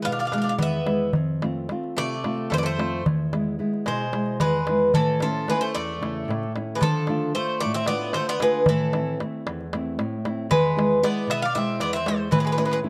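A fingerpicked nylon-string guitar and a lower second bouzouki line open this brooding, bittersweet stretch of Greek folk, cut from a longer piece, joined at once by a metallic, double-strung lead bouzouki carrying the melody up front and a small, dry clay darbuka played with soft hands. The band moves in a straight 7/8 at 225 BPM in eighths, in D dorian sharp 4, gradually speeding up as the chords shift from E and F toward A, and then, from a new section at 6.8 seconds, through Dm, Am and E. A moderate spring reverb and a dark, warm production give the octave-doubled bouzouki strings a shimmering halo against the intimate guitar.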